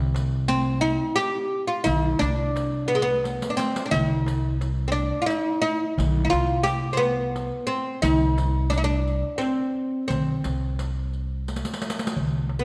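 A moderate scoring-stage reverb, about 1.6 seconds long, gives this festive, stately Arabic maqam ensemble a spacious glow. It moves at a straight 87 BPM in 3/4 within maqam suznak on C, and it is cut from a longer piece. Up front, an acoustic fretless oud carries the melody between Ab3+20c and G4, its plectrum-plucked double strings sounding bright and woody. Beside it, a pizzicato upright bass on gut strings sits on the low notes from B1 to C2 with a thumpy weight. In the background, a small, high, metal-shell darbuka played with soft hands sounds crisp, close and dry. Drum fills arrive at 3.2 and 11.5 seconds. A riq adds dark jingles that carry the sound of a live room.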